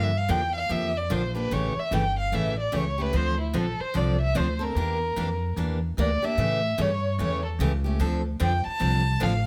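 Acoustic string swing in the jazz manouche style, this short excerpt cut from a longer piece moves at 148 BPM in 4/4 with a lilting swing on the eighth notes, set in D minor with a bittersweet, virtuosic mood. A dark-toned bowed violin carries the melody as a solo throughout, its expressive vibrato and portamento sliding through a range from E4 to A5. Beneath it, a picked steel-string acoustic guitar supplies a bright, full-bodied jumbo accompaniment, while a woody, thumpy upright bass on gut strings plucks the low end between G1 and A2. All three instruments sit up front in a light reverb, with the bass slightly the loudest. The harmony moves from Bb6 through A7 and Dm7 to Em7b5, then back through A7 to Dm7 at 8.0 seconds, giving the passage its classic minor-key pull.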